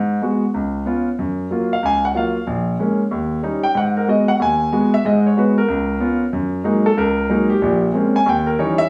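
A clear concert grand piano plays this short jazz fragment alone, setting a smoky, late-night mood at a brisk swinging pace in four. The piano sits up front with a natural tone and deep bass, ranging from its low register up into the upper middle of the keyboard. Its harmony moves through rich seventh chords, settling on a lush F#6/9 at 6.3 seconds before closing on an A#m9 and a tense D#7b9. A small room's reverb surrounds the instrument with a live, intimate ambience. Cut from a longer piece, the recording ends at 8.9 seconds.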